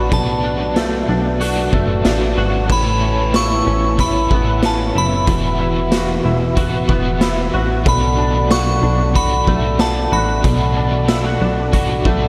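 A glassy FM synth bell carries the melody high above a hazy, ethereal dream pop excerpt in B minor at 93 BPM, its crystalline tone softened by chorus and digital delay until it drops out at 10.7 seconds. Beneath it, a clean semi-hollow electric guitar plays chorused, delayed arpeggios while a double-tracked overdriven guitar adds crunchy tremolo accompaniment, and a soft, flute-like tonewheel organ with third harmonic percussion holds sustained chords through Bm7, Aadd9 and Esus2. A punchy, wave-folded analog bass plucks low notes against a saturated garage drum kit with a pumping stone-room sound, all set in a dark production with light reverb.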